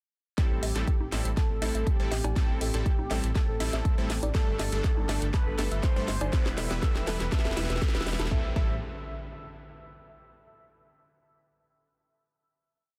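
At 0.4 s a punchy, up-front four-on-the-floor kick launches a bittersweet, expansive progressive house build in A minor at 121 BPM, joined by cracking snare and metallic hats, a background loop of bongos, congas and cowbell, and a deep, rumbling detuned saw bass rolling in sixteenth notes. A thick, bold unison lead with vibrato and dub echo carries a repeating riff over dotted-rhythm supersaw stabs, a smooth, warbling vintage pad and a soft, round pluck sequence, with filter sweeps on the pad and pluck and sidechain pumping breathing through the synths as the chords move from Am7 through Gsus2 and Em. A very quiet riser and impact enter at 3.0 s, a drum fill drives the build, and from 8.3 s a final Am7 chord rings out in a dense, heavily limited, fairly dry mix.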